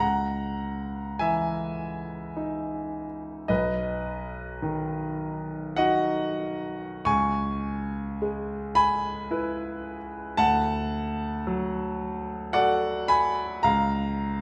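Hazy and mysterious, this impressionist classical excerpt for solo piano drifts in 3/4 at a slow, rubato 44-56 BPM. A clear concert grand sits up front for the full 14.4 seconds, its natural tone spanning from deep bass at B1 to C#6 with long sustain, while a moderate recital hall reverb lingers around it. The harmony wanders from C#madd9 through B, C#m7 and D before settling on C#6.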